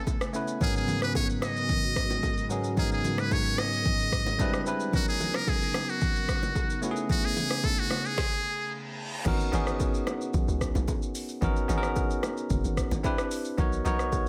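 Soulful and deep, this amapiano cut moves at 111 BPM in a straight 4/4, taken from a longer piece. A muted trumpet carries the opening melody with a buzzy, thin tone, light vibrato and a touch of digital delay. Beside it, a barky, bell-like tine electric piano plays clean and up front over an ethereal pad that sits in the background with ensemble chorus, its own reverb and sidechain pumping, while chords drift through Amaj9, G#m11, Cmaj9 and Bmaj9. An overdriven, electronic drum kit with a deep kick, woody snare and metallic hats drives the groove, and bright hand-played bongos and congas add texture further back. After a stop at 8.2 seconds and a brief reverse cymbal, the drop at 9.3 seconds brings in a hollow, bouncy log drum bass with a fast, percussive attack, all set in a light reverb.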